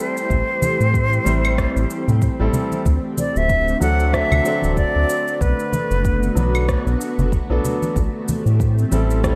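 Wistful and gently warm, this sunset chillout excerpt drifts along at 94 BPM in 4/4 with a light 16th-note swing, set in A dorian and moving through Am7, D7 and Bm7 before settling back on Am7. An airy silver concert flute carries the melody up front with vibrato and a soft attack, its analog delay trailing behind it until it stops at 6.7 seconds. Beneath it, a brilliant baby grand piano supplies accompaniment with long sustain and audible action noise, also touched by analog delay, while a silky vintage string machine holds mellow sustained chords through phaser and ensemble chorus. A round, deep analog bass sits prominently in the mix, built from detuned sawtooth, sine and triangle tones that evolve over time. The groove comes from a soft, tape-tinged electronic kick, electronic cabasa, claves and rim click re-recorded in a large room, and close acoustic congas played with soft hands. 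All of it rests in light reverb within an echo-heavy mix.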